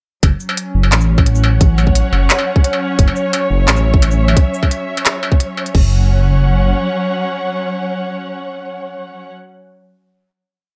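Spacious and heavy, this half-time drum and bass piece opens straight into a drop and then settles on a final chord. A tight, layered electronic kick sits up front beside a sparse industrial kit of crisp hi-hats, handclaps, shaker, struck metal and crash cymbal, both dropping out at 5.8 seconds. Beneath them, a deep, rumbling detuned saw bass holds long, beating low notes until 6.7 seconds. Muted, veiled strings sustain slowly shifting chords, roughened by vintage 12-bit sampler grit and sidechain pumping, and carry on alone to 9.3 seconds. In the background, a reversed, granular swelling texture holds a bright high note in its own reverb, and the whole piece sits in a digital ambience.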